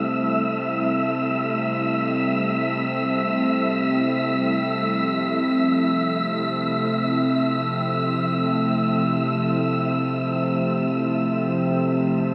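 Ambient music in free time, serene and weightless, where an ethereal, detuned pad holds sustained chords up front with ensemble chorus and shimmer reverb, an evolving, resonant analog drone on C3 fades in beneath it across the full 12.3 seconds, and a breathy, wind-like tuned noise texture drifts high above, all bathed in a cavernous cathedral reverb as the harmony moves from C6 to Fmaj7 at 4.5 seconds in this fragment of a longer piece.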